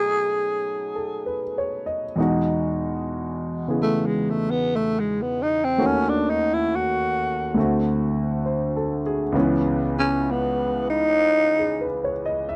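A growling, breathy tenor saxophone and a concert grand piano with deep bass and audible action noise open this late-night, intimate jazz ballad excerpt at 67 BPM in E major with a swung 4/4 feel, the raspy, vibrato-laden saxophone taking an up-front solo from 2.2 seconds over chords moving from Emaj9 through D#m7b5 and D7 to C#m7, captured in a dry, close 1970s-style studio sound with light reverb.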